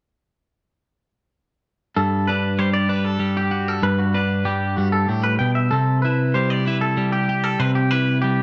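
Bright and intricate, this short rock fragment moves in a straight 6/8 at an unhurried pace. A clean, picked twelve-string electric guitar carries the accompaniment with a bright, twangy edge, sitting up front and compressed. Above it, a fingered electric guitar plays twangy arpeggios in a higher register, its warm tone bathed in spring reverb. Both guitars enter together at 2.0 seconds and play until 8.4 seconds, moving from Gmaj7 to Cmaj7 at 5.7 seconds. The overall production is dark and warm, with a light reverb around the pair, and the passage is cut from a longer piece.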